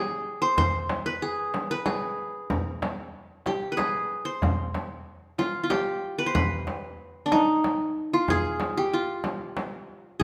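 In a straight 3/4 at 94 BPM, this melancholic, hypnotic excerpt of Arabic maqam ensemble music opens with an up-front, bright-edged qanun, plucked with fingerpicks on its triple strings, carrying the melody between D4 and C5, before a crisp metal-shell darbuka played with soft hands and a large, deep frame drum enter at 0.6 seconds, all set in the lingering reverb of a recital hall.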